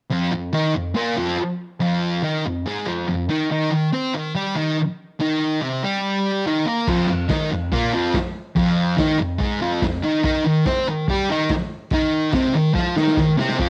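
A thick, double-tracked fuzz guitar sits up front, picking a distorted riff alone through the opening of this raw, rowdy garage rock excerpt at 142 BPM until a muffled, lo-fi vintage drum kit with a punchy kick and medium-tuned snare joins at 6.9 s and closes with a fill at 12.8 s, all captured on a home cassette recording with light reverb and small room ambience.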